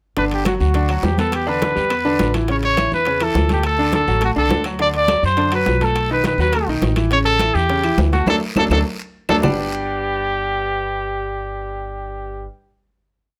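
Salsa in G major at a brisk 207 BPM in straight 4/4, this short, complete piece has a sunny, danceable mood. A clear, punchy trumpet carries the up-front solo melody, built from song-like motifs with vibrato and a vintage pop flavor, while a bright concert grand piano plays a montuno in octaves with a worn edge and deep bass. The upright bass is up front, thumpy and dark on gut strings, playing a pizzicato tumbao that anticipates the chords as they move through Gmaj7, Em7, A, D and B7. Behind them sit ringing congas with slaps and open strokes, very quiet high-tuned bongos in steady eighths with hand bell, metal-shell timbales on shell pattern and bell, woody claves keeping a two-bar time line, and a raspy guiro. A drum fill and band accent from 8.3 to 9.4 seconds close the verse, and the percussion stops at 9.5 seconds. Trumpet, piano and bass then hold a final Gmaj7 chord to the end at 12.5 seconds, heard through close, detailed microphones with light reverb.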